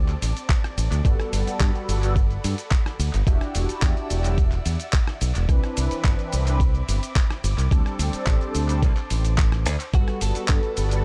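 A bright, fingered electric bass sits up front in this groovy, sensual nu-disco excerpt, moving through a low register at 108 BPM in a straight 4/4. Behind it, a thumpy, gritty electronic kick joins at 0.5 seconds, while a dusty, compressed soul drum kit supplies handclaps, hi-hat, ride cymbal, rim click and shaker, its sounds trailing off through tape echo. From 1.0 seconds a mellow, round synth brass with a soft attack and detuned sawtooth tone carries the accompaniment, colored by chorus, phaser, cassette-tape grit, tape echo and a sidechain pump. Veiled, con sordino strings hold sustained chords deep in the background with their own pumping motion, and at 9.9 seconds a twangy, clean picked electric guitar slips in with a brief melody touched by subtle chorus and echo. The harmony drifts from D7 through lush Gmaj9, Em9 and Cmaj9 chords to a D7sus4 before returning to Gmaj9, all in a dry, echo-heavy mix with little reverb.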